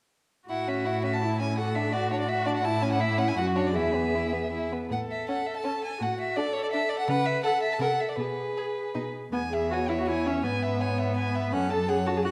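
At 0.5 s a spirited, graceful string quartet begins a quick classical-period movement in 3/4 at 154-170 BPM with a rubato feel, the up-front first violin singing an intense, smooth-topped melody with light vibrato over a focused second violin line, an even, distant viola accompaniment and an expressive, up-front cello bass marked by portamento, all four rich and bowed within the moderate reverb of a scoring stage as the music turns from A major toward E major at 7.1 s and moves into a new section at 9.3 s before this excerpt from a longer piece breaks off at 12.3 s.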